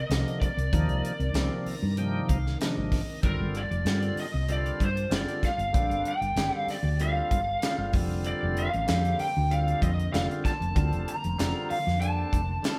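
An overdriven lead guitar from a small cranked amp carries a soaring, bright melody over woody fretless bass, a tight funk kit with a high-tuned snare, a reedy tonewheel organ on slow rotary speaker that adds a fill from 1.3 to 3.2 seconds, and a very quiet, silky string machine, in this straight 96 BPM electric jazz fusion excerpt in Bb major moving from Cm9 to Bbmaj9/F, played live in a stone room.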